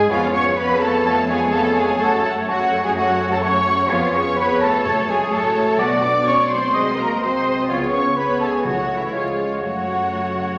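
This excerpt from a longer piece opens with the full symphony orchestra already in motion, a fast, dramatic romantic movement in F# minor at 126 BPM, played with a restless, rubato feel. A rich, distant violin section carries the melody in the background, while a hollow concert flute, a warm oboe and a second violin section with expressive portamento weave second lines around it. Beneath them, a woody, dark cello section sits up front and joins a lush double bass section on the bass, while a very quiet mellow bassoon and a close, focused viola section fill out the accompaniment. A punchy trombone section and a French horn section hold sustained chords, a roomy, very quiet trumpet adds stabs, and hard-mallet timpani on calf heads strike briefly at 4.9 and 8.6 seconds. The harmony circles between F# minor and its dominant, passing through B minor before settling back on F# minor near the close, all set in a recital hall reverb with a layer of vinyl crackle.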